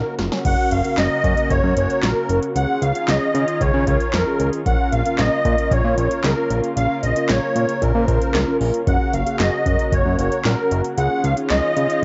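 Driving and nocturnal, this synth-pop excerpt moves at 114 BPM in a straight 4/4, cut from a longer piece and tuned slightly flat of standard pitch. A short drum fill opens the first half second as the electro analog drum machine enters, up front and overdriven, with a deep kick, punchy snare, handclaps, metallic hats and a crash. The fat analog bass sits equally forward, its detuned sawtooth and square-wave tone nasal and saturated, while a musette accordion carries the melody with a reedy, shimmering voice from the very start. Beneath them, a lush unison pad holds sustained chords in the background, thick and warbling with a moving notch, and from 0.5 seconds a mellow synth brass adds round, dark accompaniment shaded by ring modulation and a filter sweep. The harmony turns from Gb through Dbadd9 to Bbm and back, all framed by light reverb, digital ambience and the muffled top end of a home cassette recording.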